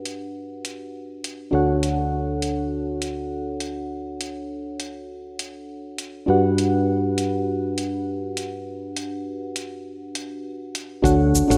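A swung 16th-note groove at 101 BPM in 4/4 sets a relaxed sunset chillout mood, with sampler-style electronic hi-hat and cabasa, gritty and compressed, ticking from 0.1 s, and a dry, deep electronic kick arriving in the background only at 11.0 s. Up front, a mellow FM electric piano with a soft, full-bodied tone, noise layer, chorus, digital delay and a filter sweep carries the Gmaj7 to Dmaj7 harmony in D major, while a dark, round, woody fretless electric bass holds the low end. A lush, wet hall reverb bathes this rough home-demo mix, cut from a longer piece.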